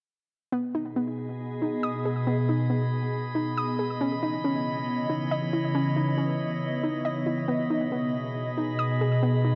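A hollow, bouncy square-wave pluck opens this floating, blissful hip hop excerpt at 0.5 s, spinning mellow, detuned arpeggios through chorus and analog delay at 138 BPM in a half-time feel. A dark, ethereal FM pad enters up front at 1.0 s, holding full-bodied B6 and C#m9 chords in B major through ensemble chorus and phaser. At 1.2 s a calm glass-harmonics texture of drifting overtones joins, all within a dry, gritty hardware recording with light reverb and a dulled top end.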